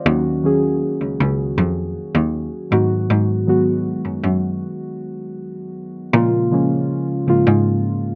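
Contemporary R&B at a straight 79 BPM in 4/4 and Bb minor, this moody, sensual excerpt from a longer piece moves from Ebm7 to Abm7 before settling on Bbm7 at 6.1 seconds. Muted, felt-like synth keys with a dark, chorused tone, a fast attack and decaying notes sit up front as accompaniment, while a single bowed cello carries the bass line with a clear, intense vibrato and a smooth top. A light reverb gives the pair an intimate small-room ambience.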